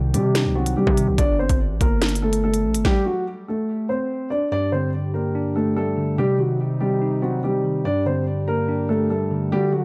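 Drill hip hop at 144 BPM with a half-time feel in G harmonic minor, cold and tense: a dark, boxy grand piano carries the tape-echoed melody throughout, while a saturated, distorted 808-style bass and a knocking, crisp drill kit drive the opening until a stop at 2.8 seconds, after which a mellow tine electric piano returns at 4.5 seconds alongside a distant, roomy French horn section holding sustained chords over Gsus2 and Cm, all in a digital ambience, cut from a longer piece.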